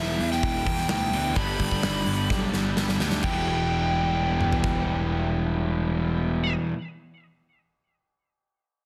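The sound is dense and heavily limited, with a moderate large-studio reverb blended with a tighter small-room ambience, giving this hard rock excerpt an aggressive, heavy weight. Up front, a fuzzed, growly picked electric bass punches alongside a gated 80s drum kit with a tight kick, medium-tuned snare, bright cymbals, hi-hat and toms, recorded in an airy stone room; the kit enters at 0.2 seconds, plays a fill from 2.3 seconds and stops at 4.7 seconds. Behind them, two cranked stack guitars, one of them double-tracked, grind out overdriven picked riffs, joined very quietly by a sludgy, dark distorted guitar. A biting, warm overdriven lead guitar carries the melody high above, colored by analog delay. Underneath, a gritty tonewheel organ shouts sustained chords through a rotary speaker at a very low level, as the harmony moves from E minor to G and back to E minor when the second section begins.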